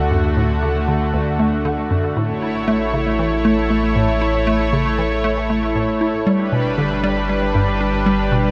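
This cut from a longer piece opens at once on a lush, warbling pad of detuned sawtooth chords, bright and up front with chorus, alongside a hollow, bouncy square-wave pluck riff with chorus and tape echo and a round, deep analog bass. The mood is cosmic and expansive, a straight, steady ambient space-music sequence in 4/4 that moves from D to A at 2.2 seconds and on to G at 6.3 seconds. A huge, wet reverb with a 9.1-second tail bathes the sound.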